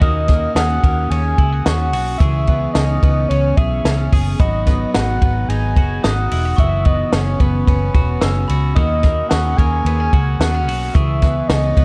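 Jangly indie pop at 110 BPM in a straight 4/4, restless and bittersweet, this dark, warm-toned fragment cut from a longer piece moves through a progression from D#m7 through C#m7, G#m7 and F#7sus4. A round, octave-layered synth lead carries the melody with chorus, vibrato and slapback echo, while a mellow glockenspiel rings a soft second line in the background and a bright, twangy twelve-string electric guitar picks arpeggios through tube saturation, spring reverb and slapback echo. Underneath, a foam-muted fingered bass sits up front with a compact cocktail kit whose high-tuned snare, punchy kick, hi-hat and ride sound natural in a small room.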